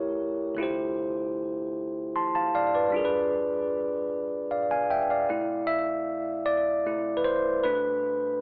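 R&B fragment in 6/8 at 51 BPM in dotted quarters, tender and sensual, where a bell-like, bright, clean tine electric piano plays alone up front through built-in speakers with slapback echo, moving through A7b9, Dm11 and G7b9 before arriving at C69 at 5.3 s for its solo passage and then Bm7, all bathed in a 3.2-second plate reverb and a worn, warbling cassette-tape quality with pitch drift and a telephone-like tone.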